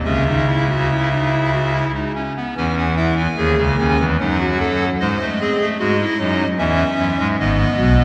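A hollow clarinet reed stop on a solo pipe organ, with baroque voicing and tremulant, carries this joyful, lively baroque-style three-part fugue in C# minor at 74 BPM in a straight 3/4, tuned to A4 = 437 Hz and spanning G#1 to G#5, with a new section arriving at 2.6 seconds as the harmony moves through C#m/E, D#dim/F# and G#7 before settling on G#m, all heard from further back in a church whose wet reverb lingers for 3.4 seconds in this brief passage cut from a longer piece.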